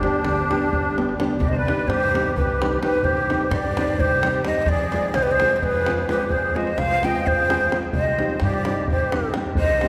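A breathy, bright ney carries the vibrato-laden melody up front, with a shimmering musette accordion on the second line, thumb-plucked nylon-string guitar, woody pizzicato upright bass and tight davul all underneath, in this virtuosic, bittersweet Balkan wedding-band excerpt in 7/8 that settles from G onto C minor at 1.4 seconds and moves through F minor, all bathed in the long, wet reverb of a church or concert hall.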